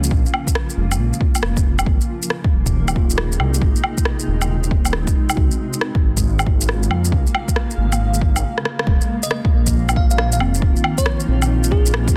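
Shaker, woodblock and rim click ride over a deep, up-front electronic kick in this rainy, melancholic, swung future garage excerpt, where a menacing, saturated detuned saw bass with a filter swell, a blurred granular cloud pad and a worn, slightly out-of-tune tine electric piano tucked in the background each pump with sidechain through a Bbm, Abadd9, Db6 and Ebsus2 progression. After a break from 8.4 seconds and a drum fill at 8.5 seconds, a sparkling, bell-like FM electric piano melody with chorus and tape echo enters at 9.2 seconds, all within a dense, heavily limited modern master.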